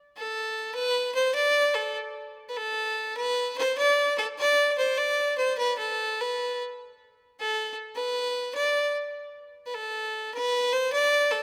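A lone fiddle, clear and intense with a light vibrato and a smooth top, carries this brief medieval excerpt, bowed by a single player and set up front. Moving in a straight 6/8 at 100 beats per minute in dotted quarters, it plays from 0.2 to 11.4 seconds within a narrow span from A4 to D5, tuned slightly below modern pitch. A moderate concert-hall reverb lends the rustic, ancient line a lingering resonance, and the tune's opening phrase begins again at 9.1 seconds.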